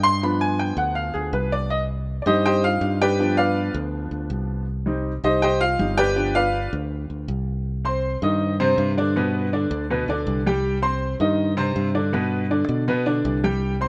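A moderate plate reverb with a 2.7-second tail gives this short salsa excerpt a lively, spacious gloss, with both instruments sitting up front in the mix. At 161 BPM in a straight 4/4, the music feels passionate and fiery, rooted in C harmonic minor and rocking between G7 and Cm before settling into alternations of Cm and plain G. A clear baby grand piano carries the accompaniment from B2 up to C6, its slightly worn tone ringing with long sustain, and it steps forward for a solo through the opening section until 7.7 seconds. A fingered electric bass runs throughout, dark, round and punchy, holding the low end between G1 and B2. The second section begins at 7.7 seconds and carries on until the cut at 13.9 seconds, leaving the impression of a fragment lifted from a longer performance.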